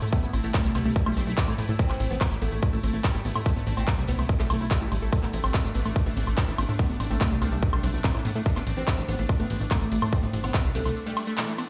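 Psychedelic trance at 144 BPM in A minor, this short cut from a longer piece feels intense and hypnotic, driven by a punchy, overdriven electronic kick drum placed up front from 0.1 seconds. A plucky analog bass with a funky, wave-folded sawtooth edge and fast, decaying filter pluck sits up front beside it, while a techno drum kit adds handclaps, smooth hi-hats, ride cymbal and woodblock with a tape-tinged, small-room character. Very quiet, grainy maracas sit underneath. In the background, a lush, detuned unison pluck carries the riff through 12-bit sampler grit, digital delay and sidechain pumping. A bright, pulsing gated texture holds sustained chords with chorus, reverb and the same pumping. Over this, a woody, fretless oud plucked with a plectrum on double strings plays the melody through phaser and tape echo, all set in a large, reverberant ambience before a brief break at 11.0 seconds.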